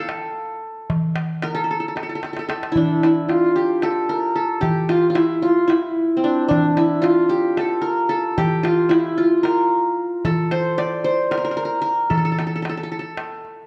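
A bright-edged, fingerpicked qanun sits up front, carrying a soulful, longing melody in 7/8 over a crisp, high, metal-shelled darbuka that plays a short fill at 2.2 seconds as this Turkish makam ensemble piece, cut from a longer work, moves into its second section at 2.8 seconds, all heard through a reverberant recital hall and the warbling pitch drift of worn old cassette tape.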